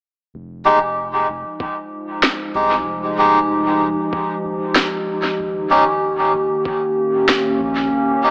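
An echo-heavy mix with the narrow, boxy tone of AM radio and a wet spring reverb frames this short, hazy fragment of ambient dub, cut from a longer piece and moving at 95 BPM in F minor with a light swing on the sixteenths. A warbly, nostalgic pad sits up front, holding sustained chords with a slow attack and long release, its chorus and built-in reverb giving it a mellow, lo-fi glow as the harmony moves from Fm9 to Eb7 at 5.4 seconds. Underneath, a soft, round dub sub bass hums deep and low, lightly saturated by tube warmth. A reedy, breathy melodica enters at 0.7 seconds with stabs that trail off into dub echo, its nasal, wooden character sitting close to the listener. The drums arrive with a muffled, thumpy, pitched-down kick with overdrive from 1.6 seconds and a woody, tape-tinged snare soaked in dub echo from 2.2 seconds, both sounding as if re-recorded in a small room, keeping the meditative mood gently in motion.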